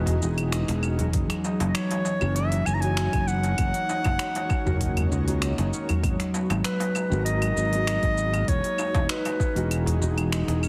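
A straight 4/4 groove of overdriven claves, finger snaps, crisp hi-hat and shaker joins a deep, saturated metal-shell darbuka at 0.1 s, with a soft, overdriven electronic kick arriving at 1.1 s beneath this earthy, meditative stretch of organic downtempo cut from a longer piece. A growly, up-front fretless electric bass pumps with sidechain compression, while a fingerpicked, ringing concert harp plays delayed arpeggios and a felt-muted upright piano, mellow and intimate with audible action noise, adds pumping, delayed accompaniment. An ethereal, detuned pad holds chorused, tremolo chords with its own reverb, and a close-miked, classical-style clarinet carries the delayed solo melody over Emaj9, F#7sus4 and G#m9 harmonies, all through a lightly reverberant, heavily compressed radio-like sound.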